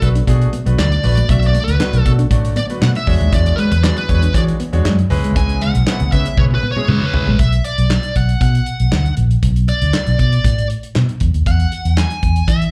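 Opening at 0.0 s, this slick, funky early-eighties boogie funk in B dorian at 118 BPM sets a smooth overdriven lead guitar soloing with slapback echo over a clear concert grand piano, a very quiet brassy, detuned analog pad, a mellow chorused electric guitar riff in the background, a round foam-muted bass up front and a dry 70s drum kit with a tight kick and handclaps, until a drum fill ushers in a sparser passage at 7.4 s where the lead guitar, bass and drums carry on alone to the cut at 12.7 s, the whole heard through a club PA.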